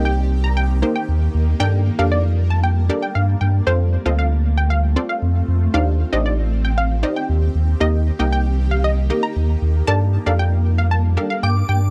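A confident, bittersweet pop passage in G minor at 116 BPM opens with a punchy, detuned sawtooth pluck playing accompaniment, a shimmering, ethereal pad with chorus, phaser and built-in reverb holding sustained chords, and a deep, round sub bass sitting up front. From 0.1 seconds a second lush, wave-folded pluck carries the melody through tape echo over a progression of Eb, Gmadd9, F and Cmadd9. At 11.4 seconds a dreamy FM bell with ensemble chorus and tremolo adds a brief bright note on top, all captured in a dry, close 1970s-style studio sound.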